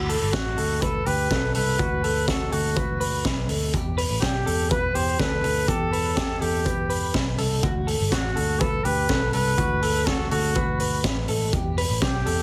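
A slightly broken-up electric guitar through a small old amp opens this wistful, restless jangly indie pop excerpt at 123 BPM, its arpeggios shimmering with harmonic tremolo over a dark, foam-muted picked bass. A raw garage drum kit joins at 0.1 seconds, up front and gritty with a boomy kick and high-tuned snare, and a trumpet enters at 0.3 seconds with a distant, roomy lead marked by light vibrato and scooped notes. The harmony alternates between D6 and Em, and the whole mix carries light reverb and a heavily compressed, radio-like sound.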